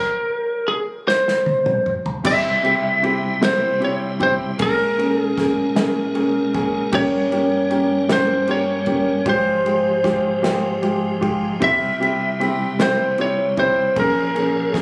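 In a straight six-eight lilt, this melancholic, dramatic pop ballad fragment opens with a bright, twangy, slightly broken-up electric lead guitar carrying the melody up front, joined at 1.1 seconds by a bundle-stick drum fill on an acoustic kit with dark cymbals and a punchy kick, before a soft, felt-muted vintage upright piano and a piping tonewheel organ, its key click, chorus vibrato and fast rotary speaker audible, enter at 2.2 seconds over a brooding progression, all in a small, phone-captured club room with light reverb.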